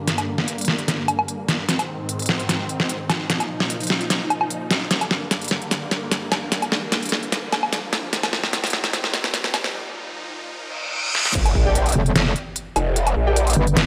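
A saturated, aggressive growl bass bursts up front at the drop at 11.4 seconds in this heavy, chaotic half-time wobble dubstep cut, followed at 12.0 seconds by a metallic FM wobble bass, after a build-up of huge, lush supersaw chords that pump under a filter sweep and phaser, tape-warm dubstep drums with a deep snare, crisp hats, crash and woodblock that run fills, and a very quiet riser, reverse cymbal and impact, while a punchy electronic kick and a bold orchestra-hit-like synth stab sitting in the background join the drop in a moderate hall reverb.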